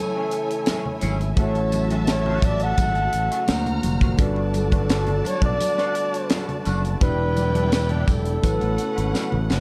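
Lush 1970s-style soul at 85 BPM in A major, romantic and smooth, where a breathy, intimate flugelhorn with scooped notes carries the melody over bowed strings with vibrato, a mellow tine electric piano, a gritty overdriven tonewheel organ with lush chorus, a lo-fi wah guitar riff, a tight funk drum kit with a high-tuned snare, very quiet congas and jingly tambourine, and a growly, punchy fingered bass entering at 1.0 seconds, moving from Amaj7 through D7alt and Gmaj9#11 to a drum fill at 9.1 seconds in a dark studio production.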